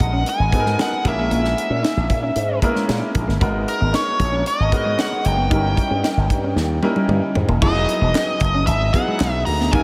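A snippet of polished 1980s jazz-funk pop with an urban, nocturnal mood opens with a growly, up-front slap bass through an envelope filter, a tight acoustic funk kit with a high-tuned snare, a brilliant, short-sustained grand piano with subtle chorus, a dark, clean, fingered electric guitar riff in the background, and an overdriven, picked lead guitar with a parked wah and tape echo carrying the nasal melody, the mix dreamy and soaked in reverb, before a drum fill at 6.6 seconds leads into an Emaj9 chord at 7.6 seconds and a crisp, very quiet group handclap joins at 8.2 seconds.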